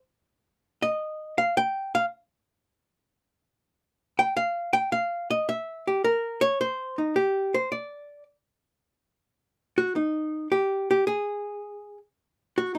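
A swung eighth-note feel in 4/4 carries this short, playful jazz excerpt. A lone archtop guitar, miked and amplified, plays by itself from 0.8 to 12.8 seconds, its clean, picked hollow-body tone sitting up front with a compressed warmth. Close, detailed microphones and a light reverb keep the instrument intimate as the passage moves from its opening section into a second one at 8.8 seconds.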